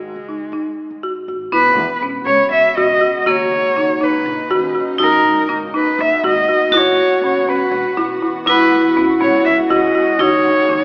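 A straight 7/8 pulse at 242 BPM, counted in eighth notes, drives this hypnotic, urgent piece of contemporary chamber music, which is cut from a longer work. A smooth, bowed cello carries the melody up front with vibrato. Beneath it, a dry, rustic folk marimba played with medium mallets turns over arpeggios from the start, and a growly pizzicato upright bass sits in the background. At 1.5 s a bright vibraphone with hard mallets and its motor off adds a ringing second line, and at 2.2 s a shimmering, ethereal pad with chorus, an octave-up shimmer and a slow attack fills in sustained chords. The harmony moves through E69, Bmaj9, G#m9 and F#7sus4 before returning to E69 and a rootless Bmaj9, all inside a moderate concert hall reverb and an AM radio sound.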